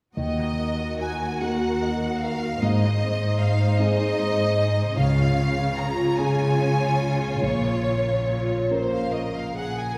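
A bright, intense violin section carries the melody up front, its vibrato-laden line set high above the rest of this cinematic, emotional film-score passage, cut from a longer piece. The mood is sorrowful and bittersweet, moving in 6/8 with uneven, rubato beats that let the phrases breathe. Beneath it, a second violin section adds a rich, focused counterline, while a dark, mellow concert grand piano supplies accompaniment with deep bass. A cello section provides the bass with a smooth, even tone, and a ringing, fingerpicked concert harp spins arpeggios in the background. The harmony moves from Ebm through Ab and Db to Bbm, the strings sound lush, and the whole ensemble is heard from further back in a reverberant scoring stage.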